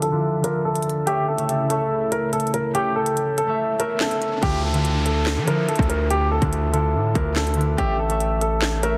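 Heavily compressed and radio-like with light reverb and digital ambience, this menacing, tense drill hip hop excerpt moves at 143 BPM in a half-time feel in D harmonic minor, where a dark, up-front concert grand piano carries the melody through a low-pass filter and tape echo over ringing, fingerpicked concert harp accompaniment and a smooth, detuned analog pad with chorus that holds Dmadd9 and A chords under a filter sweep until 4.4 seconds, while a drill kit hits with a hard-clipped kick, sharp snare, crisp hats and handclaps, an electronic riser and downlifter arrive at 3.4 seconds, and a saturated, aggressive distorted 808-style bass enters up front at 4.4 seconds.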